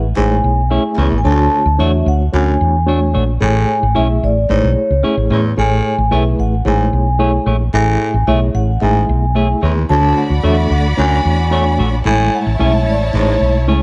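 An up-front, round and punchy fretless bass drives this danceable, uplifting soul excerpt at 111 BPM in A major, beneath a ringing soft-mallet vibraphone melody with tape echo, a reedy electric piano with fast tremolo, a gritty, growling baritone saxophone riff, clean fingered guitar stabs and a lush bowed violin section that joins at 9.9 seconds, set in a dark, warm production with light small-room reverb.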